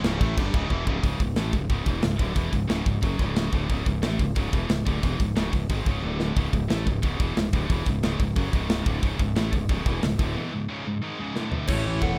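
A rough home-demo mix with light reverb carries this dark, aggressive heavy metal excerpt, where a scooped, up-front high-gain guitar riffs over a very quiet second high-gain guitar, a growly fuzz bass and a tight, pumping drum kit with bright cymbals, while a double-tracked sludgy guitar sits in the background only at the start and again from 11.7 seconds, when two dark lead guitars add a brief melody and second line just after the final break and drum fill over chords moving between C#m and D5.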